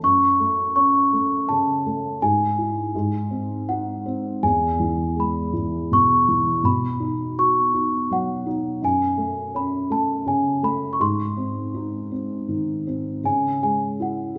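Heard through the lingering wash of a recital hall with a dull, softened top end, this dreamy, wistful lullaby drifts at a rubato 82 BPM in 3/4, its bell-like, delicate celesta melody sitting up front over a felt-muted upright piano that sounds boxy and intimate, wandering from F#m through E, B and F#madd9 before settling on C#m at 13.2 seconds in this brief cut from a longer piece.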